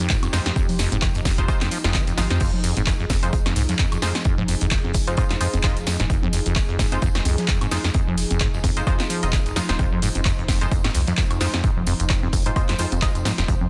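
A swung 4/4 groove drives this hypnotic, gritty acid house excerpt, built on an overdriven, punchy electronic kick up front and a tape-warm analog drum machine of congas, crash cymbal, handclaps, hi-hat, snare and woodblock, with a jingly background tambourine and a very quiet, airy acoustic kit of hi-hat and snare played with bundle sticks. A rubbery, resonant sawtooth acid bass riff with vintage 12-bit sampler grit runs throughout. It is joined at 0.7 s by a round, dark analog bass with sidechain pumping, while a smooth, detuned pad holds an Fm7 chord in the background with chorus and pumping of its own; a bright, band-passed, nasal chord stab enters at 0.3 s, evolving through chorus, cassette tape and tape echo, all inside digital ambience and a dense, heavily limited master.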